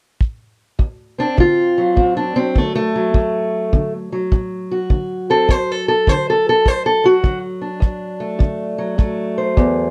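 A tight, airy kick drum enters at 0.2 s, and at 0.8 s a dark, boxy fingerpicked parlour steel-string acoustic guitar takes a soulful, gritty solo over a swung D7 in this dry, close, 1970s-style acoustic country blues excerpt, both parts sitting up front.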